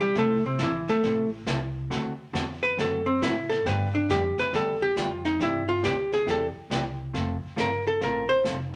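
This short, playful western swing clip, cut from a longer piece, opens with a miked and amplified archtop guitar carrying the melody, its clean, picked electric tone sitting up front, alongside a woody, thumpy pizzicato upright bass. A fraction of a second later, a dark, clean hollow-body jazz guitar comes in with accompaniment, and the events mark a hollow-body jazz guitar solo running through the whole passage. A brushed jazz kit joins at the same moment, sounding distant and roomy with a medium-tuned snare and hi-hat. The eighth notes swing with a relaxed, down-home lilt, and the harmony moves from Fmaj7 through D7, G and Cadd9 before landing on F. A wet club reverb gives the ensemble a lively, intimate room sound. The melody guitar stops at 8.4 seconds, while the bass and drums carry on to 8.8 seconds.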